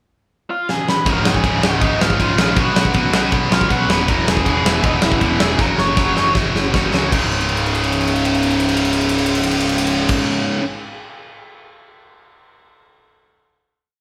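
A straight 4/4 pulse at 158 BPM drives this rowdy, energetic punk rock piece. A biting lead guitar opens at 0.5 seconds in the pickup bar, and a big acoustic drum kit follows on a fill at 0.7 seconds, settling into a two-step groove with a fat snare and tight kick. From 1.1 seconds a bright, double-tracked distorted guitar pounds out driving eighth-note power chords over a round, overdriven fuzz bass, while the lead guitar plays hook phrases partly doubled in octaves until 6.3 seconds. The band sounds live together in one large studio room with moderate reverb, closing on a final chord from 7.1 seconds under further drum fills.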